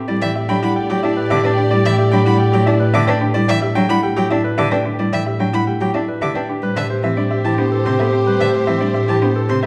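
A straight 3/4 pulse at 110 BPM drives this meditative yet urgent stretch of minimalist classical pattern music, cut from a longer piece. A brilliant concert grand piano carries the melody between G4 and G5, while a woody, rustic marimba struck with medium hard mallets turns over arpeggios beneath it and a solo violin spins its own arpeggios higher up with vibrato and portamento. A bowed cello supplies expressive accompaniment, and an up-front, lush double bass section anchors the bass on A2. A dark, smooth clarinet holds a second line on G4 alongside sustained chords from an even symphonic violin section; both fall away at 3.2 seconds and return at 6.6 seconds, just as the harmony moves from Em7/A to Am9. The whole sits in the wet bloom of a large studio reverb, with a prominent vinyl crackle running throughout.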